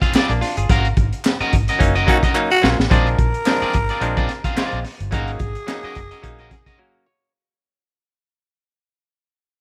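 A rough home-demo sound with vinyl crackle and small-room reverb frames this short funk cut at 108 BPM, strutting over a swung sixteenth feel as the harmony moves between Bb9 and Ab9sus4. Saturated, punchy breakbeat drums with a high-tuned snare sit up front over a round, foam-muted bass, while a twangy guitar at the edge of break-up, a stringy clav through a combo amp and crisp handclaps in the background fill out the groove, with band accents early on and a drum fill at 2.4 s. A raspy, growling tenor saxophone enters at 2.1 s with a second line just before the music starts fading out at 2.9 s, and the clav plays a closing fill that carries through a final break.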